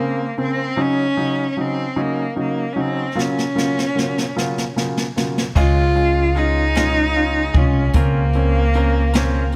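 A tender, romantic six-eight pop ballad in Db major moves at a slow 50 BPM, counted in dotted quarters, in this short excerpt from a longer piece. A rich, bowed solo cello carries the melody up front from the opening, its vibrato focused and its top smooth, over a polished, present grand piano accompaniment heard from 0.0 seconds. A jazz drum kit played with brushes enters at 3.2 seconds with a fill, its cymbals dark, its kick boomy and its snare medium-tuned, sounding natural in a small room. At 5.6 seconds a woody pizzicato upright bass arrives up front with a dark tone, alongside a clean, picked electric guitar recorded direct and compressed, which adds arpeggios in the background. The harmony drifts through Bbmadd9/Db, Ebm7/Db and Gbmaj7/Db over Db in the bass before settling on Db and returning to Bbmadd9/Db, all bathed in a small room reverb.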